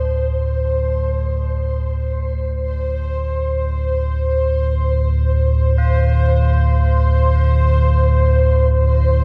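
A deep, rumbling drone sits up front in this ominous, cavernous dark ambient fragment, holding the low register from D2 to A2 with a dark blend of triangle and sawtooth tones, a slow attack and a long release, colored by a phaser and its own reverb. Above it, a bright, bubbling texture of detuned, resonant sawtooth hovers on C5, its filter stepping at random through chorus, built-in reverb and shimmer reverb. In the background, tubular bells fade in across the full 9.2 seconds, ringing solemn, metallic arpeggios between D4 and F4 with a vintage, band-limited character, trailed by diffuse ambient delay and shimmer reverb. The music drifts in free time over a single D minor chord, cut from a longer piece. A huge ambient reverb envelops the mix, and the recording carries the worn, warbling pitch drift of an old cassette tape.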